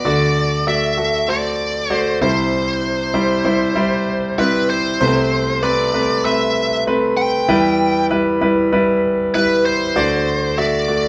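A wet studio reverb wraps this live-in-one-room pop excerpt at 97 BPM, where a polished concert grand piano with a deep bass and short sustain carries a driving, bittersweet progression from D through C, Amadd9/C and Em as a bluesy, distorted, picked electric lead guitar sings the melody up front over it.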